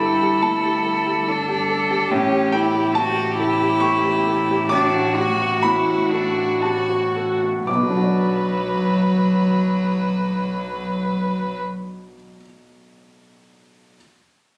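Neoclassical piano and strings in B minor, melancholic and reflective, moving in a rubato 3/4 at 56-72 BPM and slowing down from 0.8 to 7.7 seconds, as a dark, woody violin with vibrato carries the melody over a clear, nasal cello second line played sul tasto, an intimate grand piano accompaniment with audible action noise that continues alone after the strings stop at 11.6 seconds until 14.0 seconds, and a rich double bass with an airy bow, all in a room recorded on a phone with club reverb and compression, cut from a longer piece.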